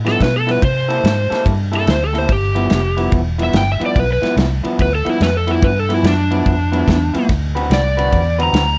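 A rollicking, soulful electric blues shuffle in G mixolydian at 144 BPM opens with a slightly broken-up riff from an electric guitar through a small old amp and a round, punchy muted bass, joined at 0.1 seconds by a dark-cymballed, tight-kicked soul drum kit and an up-front overdriven slide guitar that solos across this short, dry excerpt over chords moving from G13 through C13 and G6 to D13.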